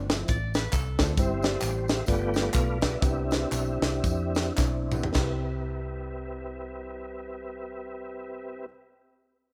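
Uptempo gospel with an uplifting, jubilant mood, swinging in four and cut from a longer piece. A tonewheel organ sits up front with sustained chords and takes a solo through the opening 5.2 seconds, its tone lightly overdriven with key click, chorus vibrato and a fast rotary speaker. A hollow-body short-scale electric bass, dark, round and punchy, also sits forward, while a clear concert grand piano accompanies in the background with deep bass. A tight funk drum kit with a high-tuned snare and tight kick drives the groove alongside tambourine, egg shaker and group handclaps. The pace slows from about 1.2 seconds, and a drum fill arrives near 4.6 seconds before the kit drops out. A dark, clean picked electric guitar adds a brief second line early on, and the whole has the small-room feel of a rough home demo.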